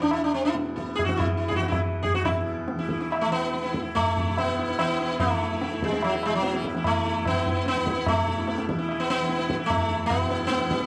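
Sitar, tanpura and tabla sound together from the first moment in this serene, meditative fragment of Hindustani classical music, set in 7/4 at 139-151 BPM and gradually speeding up. The bright, buzzing sitar carries the melody up front over sympathetic-string shimmer, while the softly plucked tanpura hums a warm drone beneath and the low-tuned tabla rings with a vintage, band-limited tone, the music moving into a new section at 2.3 seconds. A moderate recital-hall reverb surrounds the players, and the whole recording has the worn character of old cassette tape with a warbly pitch drift.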